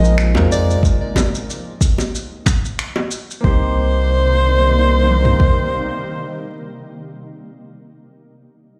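A clear, close-miked soprano saxophone sings a smooth, jazz-style melody with vibrato over intimate grand piano, a shimmering, ethereal pad and a round, deep analog bass, while a vintage brush kit adds finger snaps, shaker and toms until 3.4 s. Low-tuned bongos join at 0.3 s, and a layered electronic deep house kit with a deep kick and toms arrives at 0.8 s, giving this relaxed sunset chillout fragment a gently swung pulse. The mix sounds as if played on a big sound system in a bare room, bathed in large studio reverb, with digital delay trailing the saxophone and piano.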